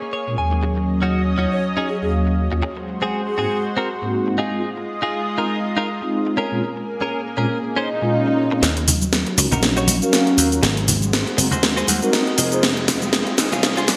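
A swung 120 BPM nu-disco groove in Eb dorian sets a sleek mood in this excerpt, where a lush, warbling unison pad, a twangy clean electric guitar riff with delay and a round, detuned synth brass carry chords from Bbm7 through Ebm7, Ab7 and Fm7, while a breathy, hollow flute adds a short gritty melody from 1.5 to 3.6 seconds and a filter sweep moves across an analog polysynth. At 8.6 seconds a build-up begins as a punchy, foam-muted slap bass, an up-front house kit with a cracking snare and gated reverb, and very quiet, ringing cabasa and congas arrive under a background riser and a pad filter sweep. The bright 1980s-style digital production sits in a wet hall reverb.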